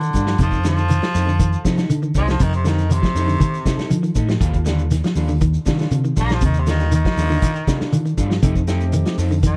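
Afrobeat with a driving, hypnotic pull, this short cut from a longer piece centers on a baritone saxophone solo that sounds raspy, gritty and distant, with vibrato and a roomy punch. Beneath it, a fingered electric bass sits dark, amped and round as the loudest part, while a vintage drum kit of kick, snare and hi-hat pumps in a small room with a rolled-off top. A grainy, mellow shekere adds acoustic texture, and a clean, picked electric guitar plays arpeggios in the background. A second electric guitar, slightly broken-up and bathed in spring reverb, adds quiet stabs from 0.1 seconds. The harmony moves from F7 to Ebmaj9#11 and back, and at 8.4 seconds a fat, lightly overdriven tonewheel organ with key click and a slow rotary speaker briefly joins.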